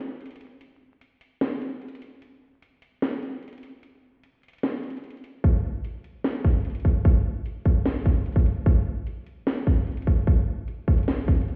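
This brooding, dark hip hop fragment opens straight into a break on a trap drum kit, which carries the whole piece from 0.0 to 11.5 seconds. The electronic, produced kit sits up front, pairing a hard-clipped kick and a sharp snare with metallic hi-hats in a half-time 4/4 feel. The break runs until 5.4 seconds, and the drums continue through the rest of this single section. The recording sounds as if it were heard muffled through a wall, with a stone room reverb, a light reverb and a bed of vinyl crackle. Shaped by EQ, the sound feels murky and shadowed, heightening the brooding mood of this short cut from a longer piece.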